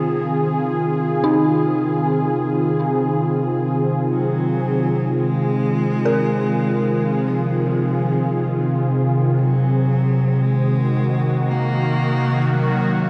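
Dark ambient drone, cavernous and dark, where a rich, close bowed cello with smooth vibrato fades in over the full 13.1 seconds through tape echo, set against an airy, evolving sawtooth pad with chorus sitting up front, an eerie, inharmonic FM bell tracing mellow arpeggios in the background with chorus, phaser and tape echo, and a deep rumbling, warbling drone, all bathed in huge reverb as the harmony shifts from Fm7 to Ebm at 9.4 seconds.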